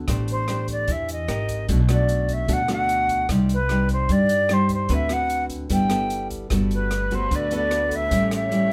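Straight, relaxed bossa nova rhythm in common time comes from an open jazz drum kit of hi-hat, rim click and a boomy kick, heard in a studio room at a lower level than the guitar, bass and flute. Up front, a fingerpicked nylon-string guitar with fresh strings carries the accompaniment in a warm classical tone, and the occasional finger squeak is audible. An upright bass on gut strings plays pizzicato beneath it, woody and thumpy. A silver concert flute takes the melody from 0.3 seconds with an airy, straight tone and a crisp attack. At 6.5 seconds a muted string section enters in the background, bowed con sordino with vibrato, its dark, veiled chords soft in attack and lush as an ensemble. The sophisticated harmony moves through chords such as Am7, Abmaj9, Cm and G69 before settling on Gmaj9 and A7, and light reverb surrounds this short cut from a longer piece.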